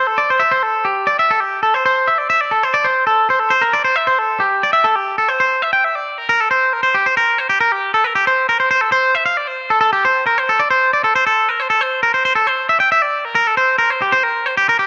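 In a straight 4/4 feel, this wistful, intricate rock fragment features a lone twangy electric guitar, bright, clean and picked, sitting up front with a spring reverb in a lightly reverberant space, moving into a new section at 5.4 seconds before the cut at 14.9 seconds.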